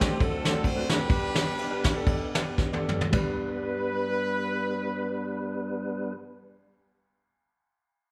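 Uptempo gospel in G major and 4/4 with a swung feel, this short excerpt carries an uplifting, hopeful mood at a tempo between 106 and 138 BPM, easing into a slowdown over its first 3.1 seconds. A punchy horn section leads the melody with light vibrato and a loose, pop-style edge, sitting up front in the mix. Beneath it, a clear concert grand piano supplies accompaniment reaching down into deep bass, while a tonewheel organ holds sustained chords with key click, chorus vibrato and a slow rotary speaker. A soft brush drum kit with dark cymbals, a fat snare and a tight kick plays a fill from 2.6 to 3.1 seconds before dropping out at 3.3 seconds. The band sounds as if playing live together in one room, wrapped in moderate large studio reverb, as a D7 chord resolves to G early on.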